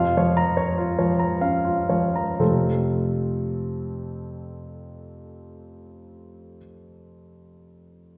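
A smooth, vintage-toned grand piano plays alone in this hopeful, passionate romantic character piece in three-four with rubato, easing from a slowing Bbm/F opening into an F chord at 2.4 seconds, all set in the lush reverb of a recital hall heard from further back in the room, as a brief passage lifted from a longer work.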